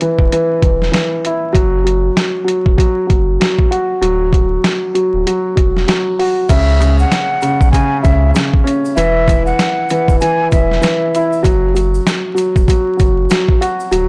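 Gritty and dark, this boom-bap hip-hop excerpt rolls along at 97 BPM in 4/4 with a 16th-note swing. A sampler-style drum kit, compressed and pitched down, sits up front with a thumpy kick, a medium-tuned snare, hi-hat and crash, while a dark concert grand piano comps in its low-middle register, its short sustain muffled by a cassette-tape character and filtering. From 0.2 seconds a deep sub bass with an added octave, sine-and-triangle in tone and lightly tube-saturated, holds sustained notes beneath the chords as the harmony moves from a chordless opening to Dadd9, then Bsus4 and Esus2. At 6.5 seconds a breathy silver concert flute takes the melody, its unsteady vibrato and crisp attack softened by filtering and trailed by tape echo, until it drops out at 11.4 seconds, while a grainy egg shaker ticks faintly in a distant large room from that same entry point. The whole mix is blown-out and overdriven, dusted with vinyl crackle and set in studio reverb.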